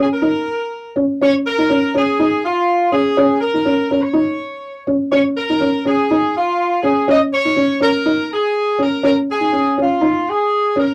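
A punchy horn section with light vibrato carries the melody in this driving, funky afrobeat fragment, while a dark, mellow felt-muted upright piano plays short-sustained arpeggios over a single Dbsus2 chord, all captured as a rough rehearsal-room recording with warm saturation and a modest booth ambience.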